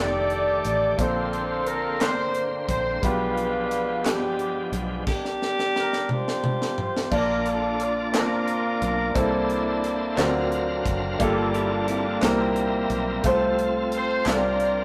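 A mellow, punchy horn section carries the melody over warm baby grand piano, a shouting tonewheel organ with slow rotary speaker and light overdrive, and a round, dark fingered bass in this jubilant, reverent slow gospel excerpt in 6/8 at 59 BPM, as a crisp fusion drum kit with a high-tuned snare enters at 0.3 seconds, background handclaps join at 2.0 seconds, a drum fill runs from 5.1 to 7.1 seconds, and a twangy clean electric guitar with tape echo adds a brief second line at 11.2 seconds, all in a stone-room rehearsal sound with warm saturation.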